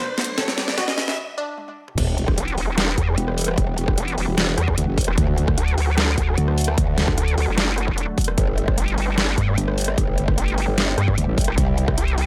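Growling, formant-filtered bass leads this menacing, aggressive stretch of heavy wobble dubstep, arriving at 2.0 seconds as the drop hits in a half-time feel, joined moments later by a nasal, resonant vowel-sweep wobble bass, both saturated, compressed, thickened with chorus and overdrive, and placed up front. Before that, a short build-up opens with a lush, detuned sawtooth pluck carrying the melody through a dub echo, an electronic riser and sub drop, drum fills and a filter sweep, pausing for a brief break before the impact. Beneath it all, a dark, floating string section holds sustained, bowed chords in the background, its smooth top pumping with sidechain and softened by a low-pass filter. The overdriven drum kit sits up front with a deep snare, crash, hi-hat, rim clicks and toms, while a punchy, layered electronic kick drives the drop. The chords move from G to Emadd9, then through D and Gadd9 to C, and the dry mix, with little reverb, keeps this cut from a longer piece tight and confrontational.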